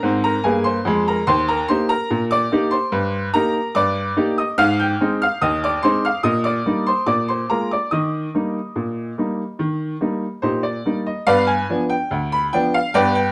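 Playful and jaunty, this short ragtime excerpt cut from a longer piece moves at 72 BPM in a straight 2/4, set in Eb major with tuning at A4 = 439 Hz. A bright upright piano plays solo throughout, sounding brilliant, woody and up front across a range from D2 to G6, placed in a moderate studio reverb. The opening section moves through Eb, Ab and Bb7 harmonies before a new section begins at 11.3 seconds on a G7 chord.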